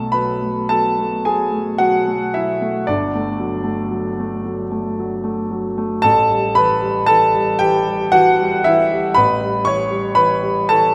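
Classical impressionist solo piano in B minor, this short excerpt from a longer piece carries a mysterious, nocturnal mood at a slow 38 BPM in 6/8, counted in dotted quarters and shaped with free rubato. A single grand piano plays throughout the 10.9 seconds, its tone present and polished, sitting up front with long sustain that lets notes hang in the air. Its range spans from a deep G1 up to a high C#6, giving the sound both dark weight below and glimmering height above. The harmony drifts through open, unresolved colours, starting on B5, moving to Gsus2 at 2.9 seconds, then Asus2 at 6.0 seconds, and settling on Em/A at 9.1 seconds. A moderate concert hall reverb with a 1.9-second decay surrounds the instrument, adding space and a soft halo to the shadowy atmosphere.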